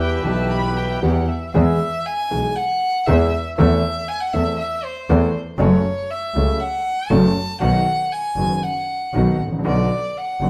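A moderate stone-room reverb surrounds this passionate, sultry tango, played live by a band in one room and cut from a longer piece. It moves at 118 BPM in 4/4 with a rubato feel, in E major. A reedy, band-limited bandoneon carries the melody only for the first second, while a string section adds soft-attack sul tasto stabs in the background. A smooth, evenly bowed violin with vibrato plays the second line throughout, then takes a solo from 1.5 seconds to the close at 10.5 seconds. Beneath it, a warm concert grand with deep, vintage bass provides the accompaniment, and a biting, earthy bowed double bass holds the low end up front as the harmony shifts from E minor to E major and on through A minor, F-sharp minor and B before settling on B minor.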